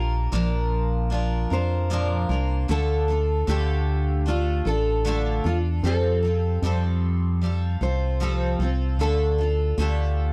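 An organ-like FM bass sits up front in this short acoustic pop excerpt, its hollow, percussive tone striking with a fast attack and decaying into a dark low end. Above it, a double-tracked, picked steel-string guitar with a full-bodied dreadnought sound provides the accompaniment, while a fingerpicked jumbo guitar with a warm body carries the melody in a modest upper register. All three parts play across the full 10.3 seconds. The music moves at 76 BPM in a straight 4/4 feel, progressing through Bb, Dm, Fadd9 and back to Dm for a sunny, heartfelt mood. The sound is dry and close, with little reverb, in the manner of a 1970s studio recording.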